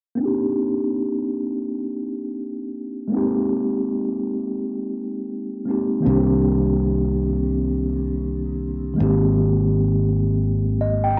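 R&B and neo-soul at a sultry, smooth 82 BPM in C minor with a 16th-note swing, this short excerpt from a longer piece opens at 0.2 s with a mellow tine electric piano, clean and up front through built-in speakers, low-pass filtered with a sweep and colored by cassette tape as it moves between Cm9 and Abmaj9 before a fill at 10.4 s, while a bright, growly fretless electric bass with lush chorus joins at 6.1 s, the whole home cassette recording sitting in a moderate booth ambience.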